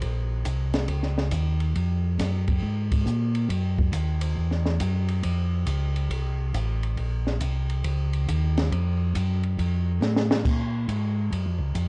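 Soul jazz organ trio at 138 BPM in 4/4 with a swung eighth-note feel, soulful and smoky in mood, heard as an excerpt from a longer piece. A mellow, round tonewheel organ carries the bass line throughout, clean with a touch of key click through a slow rotary speaker, while a compact cocktail drum kit sits up front with a punchy kick, high-tuned snare, hi-hat, ride and crash, its top rolled off and smooth. Light reverb and worn cassette tape add warbly pitch drift and a dark, muffled sheen, and a drum fill at 10.0 seconds leads into the repeat of the opening section at 10.5 seconds.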